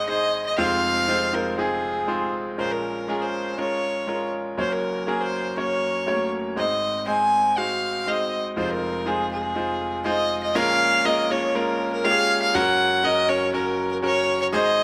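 A dark, woody fiddle with light vibrato carries the earnest, bittersweet melody up front in this pop piece, bowed by one player and bathed in plate reverb, while a brilliant, polished grand piano with long sustain accompanies throughout and slips in a fill at 9.8 s, the pair sitting in a moderate large-studio ambience in a passage cut from a longer work.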